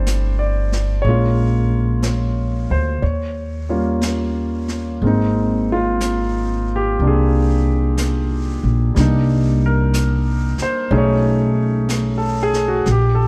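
Tender and intimate, this brief jazz ballad excerpt in a slow swing pairs a concert grand piano, up front with audible action noise and long sustain, and a woody, pizzicato upright bass over a softly brushed drum kit that sits back in a small, natural room, all in a dark, dry production.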